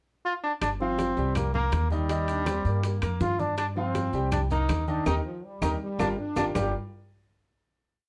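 A brilliant, punchy solo trombone leads this short, driving salsa piece in G minor at 162 BPM, entering on a pickup at 0.3 seconds with forceful hook phrases carried by a light vibrato and a distant, roomy placement up front. From 0.6 seconds a thumpy gut-string upright bass plays a pizzicato tumbao that anticipates the chords, and at 0.8 seconds a bright baby grand piano lays down a montuno in octaves over a vamp moving through G7sus4, Cm7, Ebmaj7 and Gm7. The percussion sits in the background: low-tuned congas with hard-handed slaps and open strokes, tight high-tuned bongos in steady eighths with hand bell, a woody two-bar clave time line, grainy maracas and very quiet, ringing metal-shell timbales playing a shell pattern and bell. At 2.3 seconds a clear trombone section joins with answering phrases in the melody's rests, and the band hits an accent while the drums fill before the final chord. 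The fiery performance is framed by a dark, warm production with moderate studio reverb.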